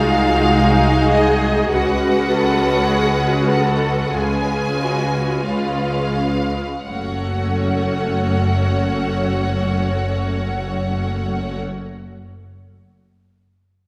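A yearning, elegiac slow movement for string orchestra opens with all sections bowing together in rubato: a clear violin section sings the focused, vibrato-laden melody over a second violin line that sounds intense and distant, while lush violas fill the middle, and a rich, up-front double bass section and a smooth cello section in the background anchor the low end. The opening phrase slows through shifting seventh chords before settling on a minor chord at 6.9 seconds, where a new section begins. Heard from further back in a wet scoring stage, this fragment of a longer piece has a spacious, reverberant sound.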